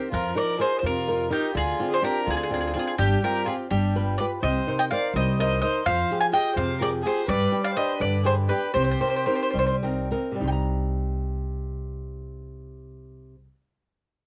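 A bright, picked bowl-back mandolin with doubled strings carries the melody up front in this wistful, romantic Italian folk serenade, a fragment of a longer piece in C minor, moving in a straight 6/8 at about 66-84 dotted-quarter beats per minute. A dark, smooth bowed violin with vibrato traces a second line beneath it, while a fingerpicked flamenco guitar and a woody, thumpy pizzicato upright bass supply warm accompaniment through chords such as Dm7b5, G7 and Cm7. The mandolin, violin and guitar carry a cassette-tape character in a homely room with light reverb; the music slows from 7.3 seconds, and after the mandolin and violin stop near 9.7 seconds, guitar and bass carry on until about 13.6 seconds.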